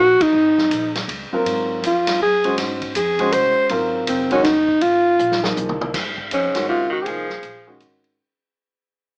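A warm alto saxophone opens this short modal jazz excerpt with the melody, its smooth top and vibrato placed up front, as a pizzicato upright bass sounds woody beneath it. A vintage drum kit joins at 0.2 seconds on a band accent, its dark cymbals, medium-tuned snare and punchy kick set in a natural studio room, swinging in 3/4 at 161 BPM. The piano enters at 1.3 seconds, smooth and up front, as the harmony moves from Absus4 to Fm, giving the music an open, searching mood. After a drum fill, a bright, forceful tenor saxophone adds a punchy second line with vibrato from 6.3 seconds while the harmony settles on Fm/Ab and the whole band fades out. Light reverb and a small-speaker sound round out the recording.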